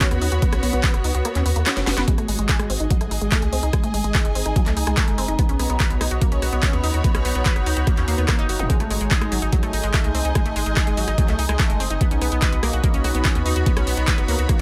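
An up-front, overdriven electronic kick with a knocking punch drives this psychedelic trance excerpt at 145 BPM in a straight 4/4, its pulse briefly dropping out between 1.2 and 2.1 seconds while a drum fill arrives. Around it, a layered, overdriven kit adds a cracking snare, bright hats, handclaps and rim clicks, all with a small-room character. A detuned sawtooth unison pluck carries the riff, lush and ring-modulated with a noise layer, pumping against the kick and trailing dub echoes, while a deep, round analog bass sits underneath from 0.1 seconds. An intense bowed string section with vibrato adds a bright pumping texture, and from 3.2 seconds a resonant drone with moving overtones hovers in the background, colored by chorus, phaser and gritty 12-bit sampler crunch. A filter sweep on a synth arpeggio runs throughout, the harmony alternates between B and G# chords, and a brief background zap flickers at 8.6 seconds in a light digital ambience.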